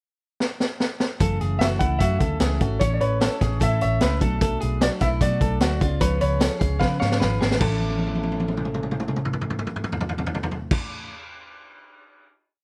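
A dry, close 1970s-style studio sound with light reverb frames this breezy, nostalgic jangly indie pop piece in A major at 150 BPM, where a gritty, saturated garage drum kit with a boomy kick and high-tuned snare kicks off with a fill at 0.4 seconds before a dreadnought acoustic guitar strumming open chord shapes, a ringing clean electric guitar figure and a round, foam-muted picked bass with slides join at 1.2 seconds, and a woody, slightly detuned upright piano carrying hook phrases, with audible action noise, rides over the F#m7 to C#7 progression until the final A chord at 7.6 seconds.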